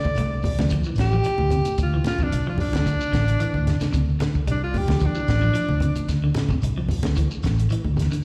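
A bright alto saxophone with light vibrato, scooped notes and slapback echo takes a defiant, up-front solo until 6.1 s in this funky afrobeat excerpt at 111 BPM with a swung sixteenth feel on a D minor ninth chord, over a round, punchy fingered electric bass, a dark compact cocktail drum kit with a high-tuned snare, thick-skinned low-tuned congas, a grainy shekere and clean hollow-body guitar arpeggios with analog delay sitting in the background, all captured as a live gig through the venue's PA with recital hall reverb.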